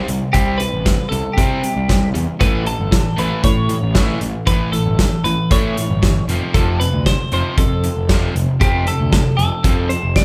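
A straight 4/4 pulse at 116 BPM drives this short, carefree indie rock cut, taken from a longer piece, with a loose acoustic drum kit sitting up front in a small, pumping room, its tight kick, medium-tuned snare and hi-hat entering at 0.1 seconds. A bright, twangy twelve-string electric guitar carries the jangly melody between G4 and D5, clean and compressed. Beneath it, a dark, double-tracked overdriven electric guitar plays a picked riff from F2 to C4. A punchy fuzz bass, picked and overdriven with a direct and amped tone, fills the low end from F1 to C3. The harmony moves from C5 to A at 2.4 seconds and F at 6.3 seconds, and light reverb gives the feel of a band playing live together in one room.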